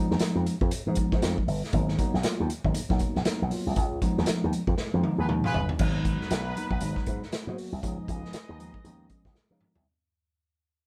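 Driving and cool, this funk excerpt moves at 118 BPM with a swung sixteenth feel, as a mellow tine electric piano plays stabs over G#m9 and rootless C#9 chords. A bright, punchy slap bass with an envelope filter sits up front beside a vintage acoustic drum kit with dark cymbals, a punchy kick and a pumping small-room sound, and the band hits a shared accent at 3.8 seconds before a drum fill. A distant, tight horn section with vibrato enters at 5.2 seconds with a second line as the piece fades out from 5.8 seconds, all in a live room with light reverb.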